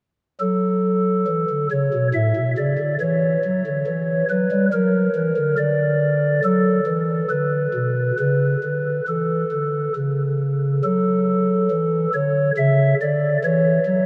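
Dark and solemn, this brief classical excerpt is a chorale-style piece in F# minor for solo pipe organ, moving at 69 BPM in 3/4 with a free, rubato feel. The stopped flute voice sits up front, soft, hollow and mellow with chiff and baroque voicing, ranging from A2 to E5 as the harmony passes from F#m through Dadd9 and Bm, reaching an unharmonized moment at 9.9 seconds before an open F#7 over E. A huge, wet reverb with an 8.6-second decay places the organ in a vast, echoing space.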